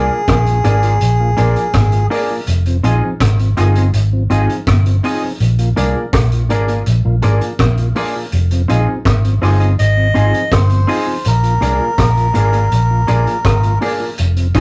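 A rough rehearsal-room recording with a saturated grain and moderate small-room ambience frames this laid-back, serious roots reggae excerpt in straight 4/4, moving between Bb7 and Fm7. A dark, round, foam-muted electric bass sits up front beneath a gritty vintage drum kit of kick, hi-hat and rim click that enters at 0.3 seconds. A clean semi-hollow guitar with harmonic tremolo, clear grand piano stabs with audible action noise, and a smooth tonewheel organ on slow rotary speaker in the background fill out the accompaniment, while a reedy, breathy melodica with tube saturation carries the melody briefly at the opening and returns at 9.4 seconds.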